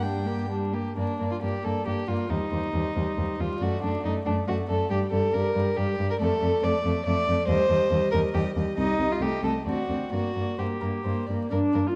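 A dark, warm production with vinyl crackle and a moderate concert-hall reverb frames this cheerful, spirited fragment of a quick classical-period movement for string quartet in triple time, played with rubato on gut strings in period style. The first violin carries the melody with an airy bow and a nasal, close tone, yet sits quieter in the balance than the second violin, whose reedy inner line has light vibrato and is placed up front. Beneath them the viola supplies accompaniment and the cello anchors the bass with a rich sound and light vibrato, all four playing from 0.0 to about 12.0 seconds.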